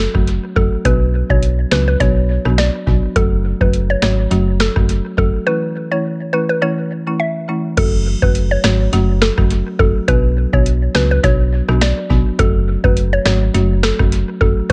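A booming analog drum machine with a deep kick, crisp snare and metallic hats, roughened by 12-bit sampler grit and analog delay, drives this bouncy, tough dancehall piece at 104 BPM in F# minor alongside a punchy, dark FM bass up front, a dry, rustic folk marimba played with medium mallets, and a woody, warbling synth pluck melody carrying chorus and delay, the whole mix steeped in echo-heavy digital ambience with a break from 5.5 to 7.8 seconds.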